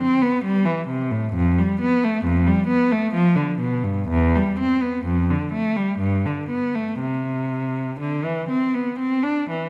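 Introspective and grave, this short cut from a longer baroque-style suite movement in C major has a single bowed cello, rich, focused and up front with vibrato, playing alone in a rubato 3/4 at about 59-68 BPM and ringing into a moderate recital hall reverb.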